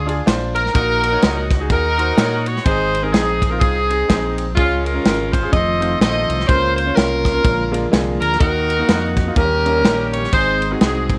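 A soulful, reverent mood runs through this short uptempo gospel excerpt, cut from a longer piece and set in 4/4 with a swung eighth-note feel. An edgy saxophone section carries the melody up front, playing as an ensemble in a jazz style with vibrato. Beneath it, a fingered electric bass gives a dark, round and punchy low end, while a clear concert grand piano supplies accompaniment with deep bass and long sustain. A natural country drum kit, acoustic and up front, drives the groove with a punchy kick, a medium-tuned snare and ride cymbal. At 4.6 seconds a mellow, flute-like tonewheel organ enters in the background with soft sustained chords through a slow rotary speaker, all set in a small room ambience.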